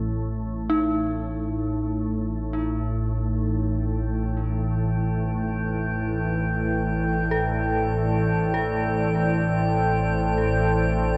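Unsettling and cavernous, this dark ambient drone drifts in free time, cut from a longer piece. From the opening, a calm, organ-like drone sits up front in the low register, its detuned unison thickened by ensemble chorus, while a dark, detuned synth bell traces eerie, inharmonic arpeggios with a warbling, vintage edge, its decaying tones trailing through chorus and tape echo. The harmony moves from A diminished to A minor at 3.4 seconds. Shortly after, at 4.1 seconds, a metallic drone adds a high, inharmonic shimmer colored by chorus and phaser, and at 4.3 seconds a deep, moody pad with a sub octave swells in beneath with mellow sustained chords. A heavy plate reverb and echo-laden mix give the whole a hollow, cave-like depth.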